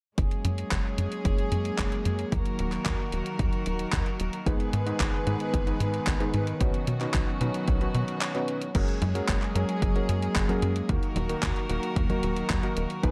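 A tight, sawtooth-edged sequencer bass drives this romantic, danceable italo disco excerpt at 112 BPM in F# major, with a filter sweep on the bass running to 8.8 s and a break from 8.2 s, alongside a punchy, tape-warm electronic kick, a sampler-style 80s drum machine with gated reverb on its congas, crash, handclaps and hi-hat, a rich, up-front chamber string section holding bowed chords with light vibrato, and a clangy vintage electric grand piano that enters at 4.5 s with tape-echoed stabs over chords moving from F#add9 through D#m, G#m and Badd9, all in a dark production with light reverb.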